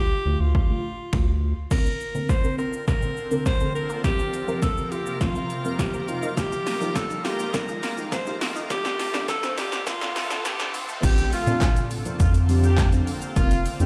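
A close-miked alto saxophone with scooped notes and tape echo carries the melody of this upbeat, summery dance-pop excerpt, over deep, mellow chord stabs treated with chorus and phaser, a punchy, overdriven analog drum machine, and a round, dark analog bass that pumps to the sidechain. A juicy, squelchy blip pluck enters in the background at 1.7 seconds playing arpeggios, followed by a shimmering, ethereal pad at 2.6 seconds, then a very quiet riser and a grainy vintage tube shaker in the background, as a build-up with a drum fill and filter sweep gathers momentum. At 11.0 seconds the drop arrives, the saxophone gives way to a distant, roomy horn section with light vibrato, and the bass returns, all heard through a stone-room ambience as if on a big sound system in a bare space.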